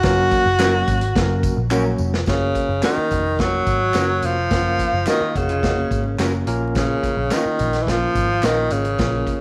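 A small-room recording with light reverb and vinyl crackle carries this joyful, danceable snippet of uptempo 1960s-style soul at 107 BPM in F# major, where a breathy, bright tenor saxophone sits up front with vibrato and a soft attack, playing a jazz-style solo melody over a clean tine electric piano heard through its built-in speakers. Underneath, a dark, round, foam-muted electric bass and a vintage acoustic drum kit with a punchy kick, medium-tuned snare and rolled-off top drive the groove, while an egg shaker and group handclaps sit in the background. Two slightly broken-up electric guitars through a small old amp add colour from the back: one plays lo-fi stabs with spring reverb from 0.6 seconds, the other a compressed riff at 5.1 seconds, after a drum fill at 1.7 seconds leads into a new section and the harmony moves from F# to A#m near the end.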